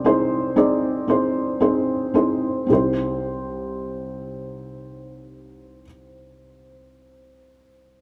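A felt-muted upright piano, dark and intimate with audible action noise and a short sustain, sits up front in this heartbroken, emotional pop excerpt, playing accompaniment that slows through its opening 2.7 seconds over Ab/C before settling on Cm, all bathed in a moderate plate reverb.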